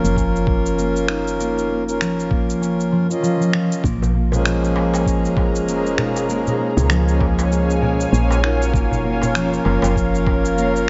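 A reedy, breathing hand-pumped harmonium sits up front in this mystical organic downtempo excerpt at 98 BPM in 4/4, carrying chords that move between Gbmaj7 and Bbm7 with sidechain pumping and delay. A mellow concert harp, thumb-plucked and ringing, plays arpeggios through its own delay. Beneath them a woody, round FM bass with a dark, decaying tone also pumps to the sidechain. A gritty, thumpy sampled kick with tape warmth and overdriven electronic cabasa and finger snaps drive a 16th-note swing, and a crisp metal-shell darbuka played with hard hands joins at 4.0 seconds. At 5.1 seconds a cloudy, evolving granular pad with a slow attack and built-in reverb adds blurred, detuned sustained chords, all set in a moderate concert hall reverb with the highs trimmed above 7.7 kHz.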